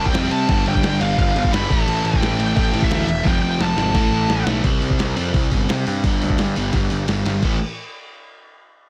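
Punk rock at 173 BPM in A minor, urgent and aggressive, driven by a compressed, pitched-down lo-fi sampler-style drum kit with a thumpy kick and muffled, tape-warm tone sitting up front beside a growly, fuzz-drenched picked bass. A bright, smooth overdriven lead guitar carries the melody in a high register until 4.4 seconds, while a hollow-body semi-hollow guitar, a sludgy overdriven guitar and a tight, double-tracked distorted guitar play riffs in the background, the last dropping out at 4.6 seconds as the harmony moves to C5. Drum fills break up the dense, heavily limited, nearly reverb-free mix, and this cut from a longer piece closes on an A5 chord at 7.4 seconds.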